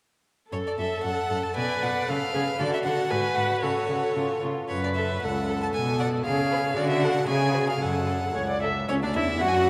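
Set in a brisk 2/4 with a flexible, rubato pulse, this fragment of a quick classical-period string quartet movement has a stormy, dramatic mood. All four players enter together at 0.5 seconds and carry on until 9.7 seconds. The first violin sings the melody high and close, with a bright, intense tone, an airy bow and vibrato. The second violin sits in the background with a smooth, even line, while the viola fills the middle with focused, vibrato-laden accompaniment. Beneath them, the cello's rich bass stands up front. A cathedral-like reverb with a long tail washes over the ensemble, and the harmony thins to a bare moment at 5.7 seconds before the minor-key drama resumes.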